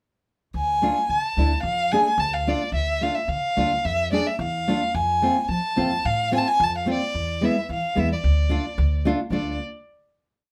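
Festive yet soulful, this short, complete klezmer piece moves at a moderate, straight four-beat pace from its opening at 0.5 seconds to a final chord that rings from 9.3 seconds. An upright bass leads in, plucked with a woody, growly tone from its steel strings, keeping a steady quarter-note figure in its low register. A single bowed violin carries the modal melody up front, its soft attack, vibrato and sliding portamento giving the ornamented line an expressive, singing quality. A fingerpicked nylon-string guitar adds full-bodied, deep classical warmth with off-beat triad chords. The harmony travels from D minor through F and E before settling back on D minor, all set in a moderate studio reverb that keeps the trio close and intimate.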